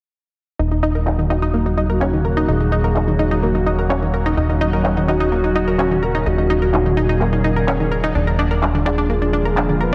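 Progressive house at 127 BPM in Eb minor, this driving, expansive clip from a longer piece moves from Ebm7 through Gb/Eb to Bb7/Eb over a fat, thick analog bass rooted on Eb1 and a bright, detuned sawtooth pluck whose arpeggios carry chorus, delay and a filter sweep from 0.6 seconds. An evolving, warbling wavetable pad with a slow attack enters at 1.0 seconds with sustained vintage chords. A soft, dark octave-layered lead with sub-octave weight, tremolo and vibrato follows at 1.3 seconds, while layered electronic handclaps with a low-passed snare sit in the background of a dreamy mix soaked in lush hall reverb.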